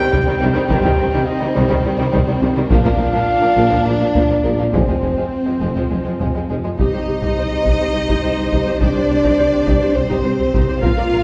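An epic orchestral film-score cut, dark and grand in 7/8, taken from a longer piece. A rich studio violin section carries the melody with vibrato and expressive portamento, while a second, warmer violin section adds a focused, lush line beneath it and a smooth viola section fills in the accompaniment. A mellow French horn section holds sustained chords in the background, and a dark solo trumpet punches in with stabs until about 6.5 seconds. The low end comes from cellos and a distant double bass section, joined by a very quiet, soft-edged tuba. A taiko ensemble struck with hard sticks supplies the percussion, its sound compressed and saturated. The harmony moves from C minor through B-flat and F minor before returning to C minor at 6.8 seconds as a new section begins, all set back in a wet recital-hall reverb.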